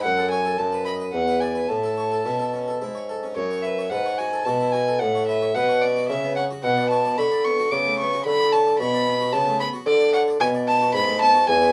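A period-style violin with a nasal, gut-string tone and an airy bow sits up front, carrying the melody of this flowing, radiant baroque-style sonata movement in A major at 111 BPM in 3/4. A warm bassoon with light vibrato holds the bass line just as close, while a dry, close-miked French-style harpsichord with two sets of strings supplies a full plucked accompaniment at a lower level. A light small-room reverb frames this short excerpt, whose harmony moves from F#m through E7 and A before settling on Bm and Bm7.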